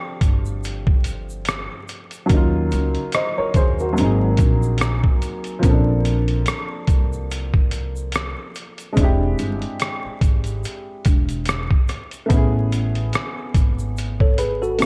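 A slightly detuned, woody upright piano opens this cosy, mellow lo-fi hip hop excerpt at 72 BPM in 4/4 with a swung 16th feel, its tone softened by cassette tape and a low-pass filter as it moves through chords such as F69, Ebm7 and Bbmaj9. From 0.2 seconds, a pizzicato upright bass with steel strings joins a gritty, pitched-down trip hop sampler kit whose thumpy kick, hi-hat and rim click sit compressed and up front with 12-bit grit, while a grainy egg shaker stays in the background. At 14.2 seconds, a worn, slightly out-of-tune tine electric piano enters as a second line, lightly overdriven through built-in speakers with analog delay, over a bed of vinyl crackle and light small-room reverb.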